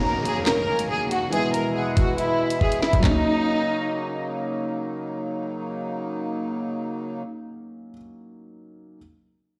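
Menacing and dark, this half-time drill excerpt at 140 BPM in Eb phrygian opens with a lush, vibrato-rich violin section carrying the melody up front, a distant, airy flute on a second line behind it, both touched with digital delay, over piano with audible action noise, a reedy, breathing harmonium and a background downlifter. An overdriven drill kit with a knocking kick, woody snare, bright hats, handclaps and toms punches in at 0.3 s, closes with a fill and drops out at 3.1 s. The harmony moves from Ebm7 to E and back to Ebm7, and the piano carries on alone after the harmonium fades at 7.2 s. The excerpt sounds as if played on a big sound system in a bare stone room.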